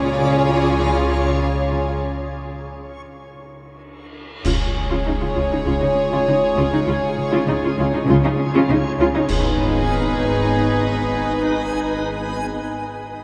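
Bowed strings open this mysterious, uneasy suspense film score cue at 99 BPM, with floating sul tasto violins carrying the melody and a second line over dark, intimate violas in the background, a very quiet cello riff, cello and distant double bass holding the bass, and a reversed, detuned, granular swelling texture sustaining chords, while bright cymbal swells, clash cymbals and concert bass drum strike at 2.0 and 9.3 seconds, tight French horns join in the background at 4.5 seconds, and the harmony moves from C# to G#m, all bathed in a vast cathedral reverb.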